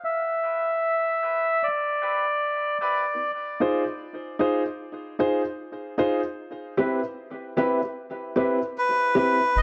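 Deep and meditative, this reggae excerpt opens on a break where a reedy, breathy melodica carries the melody through tape echo, and woody upright piano stabs with audible action noise soon join it over major-seventh and minor-seventh chords. At 6.8 seconds a dark, clean, fingered electric guitar adds subtly chorused accompaniment, and the melodica returns briefly before a round, sine-like sub bass sounds a single up-front note at 9.6 seconds. A moderate spring reverb and small-room ambience surround the swung groove.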